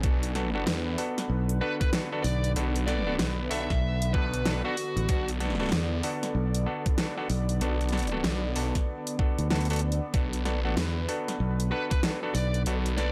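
Glitch hop in B minor at 95 BPM with a 16th-note swing, this funky, playful excerpt from a longer piece rests on a single Bm7 chord, where a knocking, overdriven electronic kick and a dubstep kit with a huge snare and bright hats sit up front beside a swirling, thick phased detuned saw bass and a round fingered electric bass with transformer saturation entering at 1.3 seconds, while stringy overdriven clav stabs pump with sidechain and tape echo, a dark, picked overdriven lead guitar carries the melody from 1.6 to 5.3 seconds and returns at 11.7 seconds, and a warbling, nostalgic lo-fi pad holds sustained chords with chorus and reverb in the background, all in a dry, gritty hardware sound with digital ambience.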